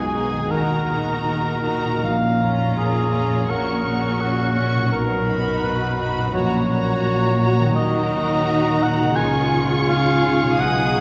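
A solo cor anglais sits up front in this short excerpt from a cinematic, emotional film score, singing a second line with light vibrato in a classical style. Above it, a distant violin section carries the melody with a soft attack and expressive vibrato, while a darker violin section glides with portamento in the background. A clear, focused viola section and a smooth, even cello section on the bass fill out the lush bowed strings, and a warm concert grand piano adds deep bass notes with long sustain. A very quiet concert harp plays ringing, fingerpicked arpeggios. The rubato feel and the wet reverb of a church or concert hall give the passage an uplifting, hopeful glow.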